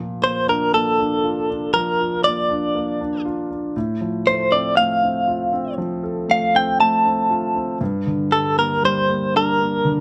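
Moving in a slow, straight 4/4 at 59 BPM, this hopeful, heartfelt acoustic folk-pop ballad in F major is cut from a longer piece and drifts from Bb to F/A and on to Gm. An intimate concert grand piano carries the accompaniment, its deep bass, long sustain and audible action noise sitting up front, while a clean, direct-recorded electric guitar enters at 0.2 seconds with a picked, compressed melody treated with tremolo. Close, detailed microphones and a moderate studio reverb give the pair a natural, present sound.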